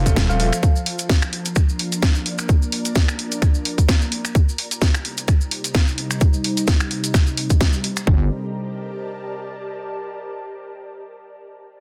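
Bass house at 129 BPM in G minor, this bouncy, aggressive excerpt cut from a longer piece rides a swung 16th-note groove, with a tight, up-front electronic kick and a garage kit of finger snaps, bright hats and a cracking, soft-clipped snare running from 0.1 to about 8.1 seconds alongside grainy maracas. A sweeping resonant sawtooth pad holds sustained chords from the start, moving from F to Bb to Cm7 with a slow filter swell, its chorus and sidechain pumping giving it an evolving, pulsing shimmer. The heavy, saturated wobble bass growls low in short bursts, opening the track and returning at 8.1 seconds as the harmony lands on Gmadd9. Early on, brilliant grand piano stabs with dub echo and a round, tine-like synth pluck on a single high F add brief flashes of color. Above it all an ethereal, airy pad, detuned and bathed in ensemble chorus and reverb, drifts in softly and lingers alone to 9.9 seconds. 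The sound is dense and heavily limited, set in a digital ambience.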